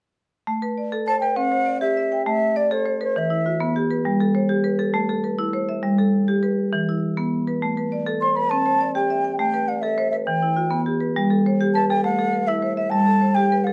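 Southern African traditional music in an mbira-style interlocking cycle, hypnotic and rippling, moving at 135 BPM in 12/8 over an A equiheptatonic tuning, with chords cycling through Am, C, Em and G. A hard-mallet marimba sits up front with percussive, vintage, band-limited arpeggios from 0.5 seconds, while a breathy, mellow concert flute with vibrato and a crisp attack carries an expressive melody, entering at 1.1 seconds, pausing at 3.8 and returning at 8.2. A small, wet room gives the dark production a short tail.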